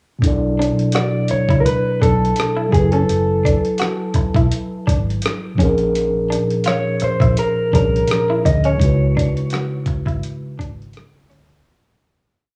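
A cassette home recording with light reverb frames this smooth, soulful neo-soul R&B piece, where a gritty, compressed sampler-style drum kit with a thumpy kick plays a laid-back beat with ghost notes, a dark, round, foam-muted electric bass adds muted ghost notes and chromatic approach notes, a mellow tine electric piano holds spread chords with grace notes, one slightly broken-up guitar picks muted single notes through a phaser, and an up-front lo-fi guitar with tape echo carries a hook-based melody, while the piece fades out from 8.8 seconds.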